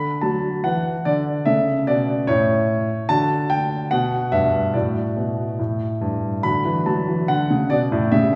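A cheerful, graceful classical-period piano sonatina in D major, this 8.4-second excerpt moves at 72 BPM in 2/4 with a rubato feel. A lone grand piano, smooth and vintage in tone and placed up front, spans G2 to B5 through a progression that rests on D, touches A, B5 and Gsus2, and settles back on D. The playing is bathed in a recital hall's reverb with a 1.6-second decay, lending the church or concert hall setting a gentle bloom.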